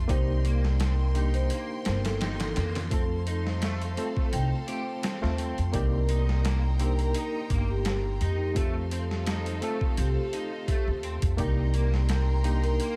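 Trip hop with a hypnotic, brooding mood, cut from a longer piece, where a gritty, pitched-down boom bap sampler-style drum kit with a thumpy kick sits up front in a small room beside a woody pizzicato upright bass, swinging over a slow alternation of Cm7 and F. A barky, overdriven reed electric piano through a combo amp adds tremolo and tape echo. A focused, bowed chamber violin section holds rich chords with vibrato, a slightly broken-up, twangy electric guitar picks arpeggios through ensemble chorus and diffuse ambient delay, and a ringing, metallic vibraphone carries the melody in the background with slow motor vibrato and tape echo.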